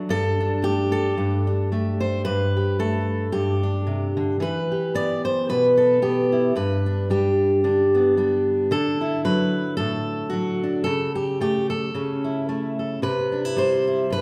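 This folk piece for solo fingerstyle acoustic guitar, cut from a longer work, carries a nostalgic, peaceful mood at 111 BPM in 4/4, with a gentle 55% swing on the eighth notes in G major. A single fingerpicked steel-string acoustic guitar plays throughout, sitting up front with a warm, auditorium-like tone and spanning G2 to D5. The harmony opens on Gsus2, moves through Em and G, and at 8.7 seconds a second section begins on Dadd9, passing through A/C# before settling on Cmaj7 at 13.0 seconds. A wet recital hall reverb with a 1.5-second decay surrounds the guitar, giving the recording the spacious air of a church or concert hall.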